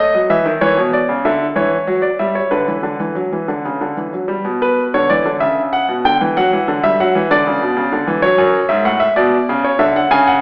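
A 6/8 pulse, counted in dotted quarters at 63 BPM with a straight feel, carries this brief fragment of a baroque-style two-part invention in B minor, tuned to A4 = 439 Hz. A solo grand piano plays throughout, its tone warm, smooth and vintage, sitting up front while spanning F#2 to G#5. The mood is serious and solemn, with harmonies moving through colors like Bmadd9, F#5/E and Bm/D before a second section begins at 4.5 seconds, passing through C#dim, Dadd9 and F#m and settling again on Bmadd9. A wet recital hall reverb surrounds the instrument, and the listener seems placed further back in the room, while an AM radio character colors the overall sound. Cut from a longer piece, the fragment ends at 10.4 seconds.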